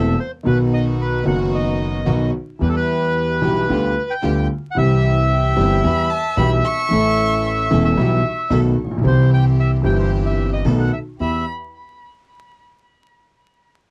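A dry, close 1970s-style studio sound with vinyl crackle frames this sultry, melancholic tango in E minor at 112 BPM with a rubato feel, where a reedy, vintage bandoneon carries the melody up front over smooth grand piano accompaniment and woody pizzicato upright bass, a rich, earthy chamber string section adds bowed stabs in the background, and a single expressive violin with vibrato, portamento and tape echo sings a second line from 5.3 to 7.7 seconds before returning at 11.2 seconds as the fragment, cut from a longer piece, lands on E minor.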